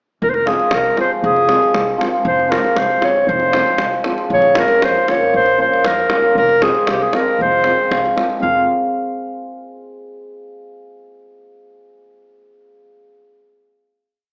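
A fiery, virtuosic Balkan wedding-band piece in F minor opens at 0.2 seconds with a distant, roomy clarinet playing a classical-style, motif-based solo melody up front, over a woody pizzicato upright bass on root and fifth on the main beats and a deep davul with a two-stick drum pattern. At 0.5 seconds a shimmering, ringing hammered dulcimer joins up front with off-beat triad chords, and the straight 2/4 groove at 117 BPM moves from F minor to B-flat minor and back before settling on a final chord at 8.4 seconds. A moderate recital-hall reverb surrounds the band, and the whole has a small-speaker sound.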